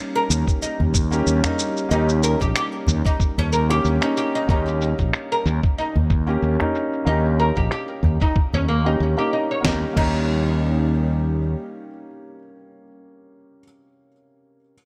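An up-front, bright fretless electric bass anchors this hypnotic, meditative organic downtempo excerpt in swung 4/4, joined by a woody, double-strung oud plucking arpeggios, a mellow felt-muted upright piano and a smooth sawtooth analog pad in the background, with the piano, pad and bass all pumping, while a thumpy electronic kick, a gritty, compressed sampler-style kit of fat snare, finger snaps, shaker and crash, and a small, dry udu fill out the groove, with the piano, pad, bass and drums passing through a filter sweep until 9.6 seconds.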